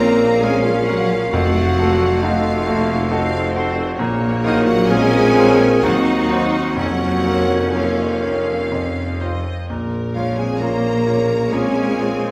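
The piano opens at the front together with the orchestra, its intimate, polished tone carrying the melody with deep bass, long sustain and audible action noise. This is a brooding, tragic romantic movement for piano and orchestra in a rubato triple metre, cut from a longer piece. A distant violin section shares the melody in the background, while a second, intense violin section and a dark, soft-attacked solo clarinet trace a second line above the light-vibrato viola accompaniment. Mellow French horns hold sustained chords, and the bass is carried by a focused, bright double bass section, a smooth, lush cello section and a roomy solo tuba. Timpani struck with hard mallets enter at 1.3 s and stop at 5.3 s, barely audible, as the harmony passes through minor and diminished colours in a wet recital-hall reverb.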